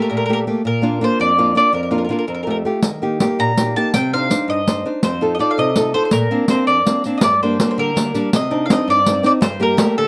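Close, detailed microphones and a light reverb give this short cut from a longer Italian folk serenade an intimate, up-front sound, set in Bb major at 110 BPM in a straight 6/8. A woody, double-strung mandolin carries the wistful, passionate melody over a small, fingerpicked nylon-string guitar, and a riq with bright jingles joins at 2.8 seconds. At 7.2 seconds the harmony turns toward G minor for a new section that runs to the end at 10.1 seconds.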